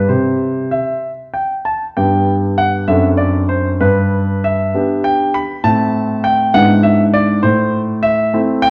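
A warm, polished grand piano sits up front and present as the sole voice in this short classical-period sonatina, cut from a longer piece and spanning about 8.7 seconds. The mood is cheerful and playful, moving in a lilting 6/8 at 65 dotted-quarter beats per minute with an uneven, swaying pulse in G major. The piano ranges from F#2 up to B5, opening on a C chord before a new section arrives at 2.0 seconds, settling on G and passing through D7/F#. The harmony then turns toward A minor around 5.7 seconds, with E7/G# leading back to Am at the close. A wet recital hall reverb gives the notes a lingering bloom, while a worn, cassette-tape quality adds a warbly drift in pitch that lends the sound a slightly wobbly character.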